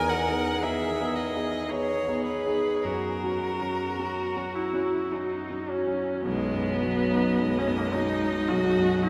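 A single bowed violin carries the melody with focused vibrato, singing at the top of a slow, tender romantic movement for piano quartet in triple metre shaped by free rubato. Close beneath it, the cello draws a smooth, even second line, its vibrato adding gentle motion. The concert grand piano supplies accompaniment with a natural tone and deep bass, and the viola joins it at 0.6 seconds with a rich, bowed voice. The harmony moves from Emaj7 to F# and settles on B as a new section opens at 6.3 seconds. A wet cathedral reverb with a long 6.2-second decay surrounds the quartet in this passage cut from a longer piece.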